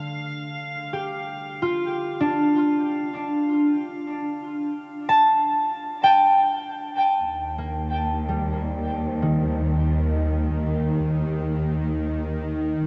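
A ringing concert harp plays fingerpicked arpeggios up front through a diffuse ambient delay, while a glassy sine texture of drifting overtones fades out beneath it. This serene ambient excerpt in 3/4 sits in a huge, wet reverb with the dulled top of cassette tape. At 7.2 seconds a dark, lush bowed cello section takes the bass up front with smooth vibrato, soon joined by a tense, string-like drone with a ring-modulated noise layer and, fading in from the background, a velvety, detuned synth lead with chorus.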